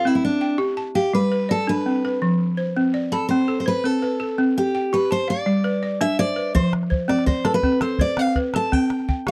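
Joyful and flowing, this short excerpt of West African string and xylophone music rolls along in 12/8, with a picked steel-string acoustic guitar carrying the melody in a full-bodied, up-front solo throughout. Beneath it, a woody, buzzing balafon struck with hard rubber mallets spins arpeggios, and a deep, dry calabash joins at 6.6 seconds to add close percussion. The sound is intimate and close, like a 1970s studio session, touched with light reverb.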